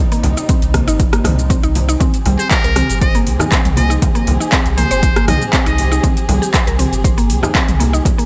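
In this spiritual, earthy afro house excerpt, dark, lush sul tasto strings holding sustained chords over Cm7 and Fm are joined by a woody FM mallet-like pluck playing chorused, delayed arpeggios, a deep house kit with metallic hats, claps, rim clicks, shaker and toms, a round sine sub bass, very quiet ringing congas, and then an overdriven, punchy electronic kick, while a buzzy, breathy metal-muted trumpet with scooped notes sings a jazz-style solo line from 2.4 to 6.0 seconds in a dim digital ambience.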